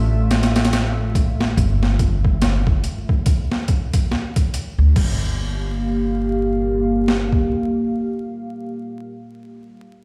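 Dark and hypnotic, this slow trip hop fragment in G dorian sits at 71 BPM with a swung 16th feel. A deep sawtooth pad with chorus, built-in reverb and 12-bit sampler grit sustains Fmaj7 then Gm7 from 5.0 s, while a woody pizzicato upright bass on gut strings holds the low end. A pitched-down, overdriven boom bap kit with thumpy kick, high-tuned snare, hi-hat and crash joins at 0.3 s, and bass and drums drop away at 7.5 s, leaving the pad in a stone room ringing with vinyl crackle.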